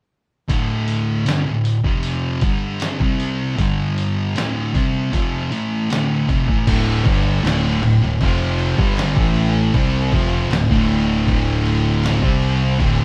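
A compressed, pitched-down, muffled sampler-style drum kit sits up front with a thumpy kick, medium-tuned snare, hi-hat and crash cymbal, anchoring this heavy, sludgy stoner and doom metal excerpt in D minor at 78 BPM, where two distorted fuzz guitars, one dark and one warm, riff in the background from 0.5 seconds before a bright, double-tracked fuzz guitar and a growling, overdriven fingered electric bass join at 6.7 seconds, the band playing live in one room with light reverb.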